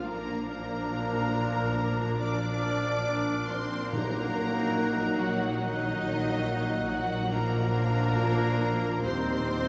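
Lyrical and serene, this slow romantic orchestral movement unfolds with a gentle rubato, cut from a longer piece. A smooth violin section carries the melody high above, with light vibrato and an even top, while a second, focused violin section sits in the background beneath it. A distant silver flute with a pure, crisp attack adds a high second line, and a very quiet dark clarinet murmurs lower down. A lush, very quiet viola section fills in the accompaniment, as mellow French horns and a tight trombone section hold sustained chords in the background. The bass is anchored by an intense cello section and an up-front double bass section with soft attack, while very quiet, articulate timpani struck with hard mallets sound until 5.2 seconds. Everything is heard from further back in a cathedral-like space, its long, wet reverb giving the orchestra a spacious glow.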